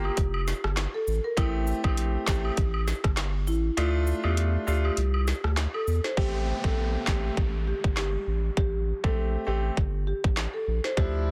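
A dense, heavily limited modern master with studio reverb frames this tough, bouncy dancehall excerpt at 100 BPM in 4/4, its sixteenths lightly swung in A phrygian. An up-front, electronic island pop kit drives it with a tight kick, woody snare, metallic hi-hats, handclaps and rim clicks, re-recorded in a small room, while a deep, thick, saturated sub bass with a fast attack sits just as far forward. A mellow, round marimba played with soft mallets on rosewood bars carries the melody through tape echo, over a brilliant concert grand piano whose accompaniment shows audible action noise and long sustain. A distant woodblock and cabasa, heard in a large room, add acoustic texture through the first half, and the kick is muted from 3.8 to 6.2 seconds before an electronic downlifter enters at 6.2 seconds. The harmony moves from a G7 lacking its third to Am7 and Dm, then returns to Am7.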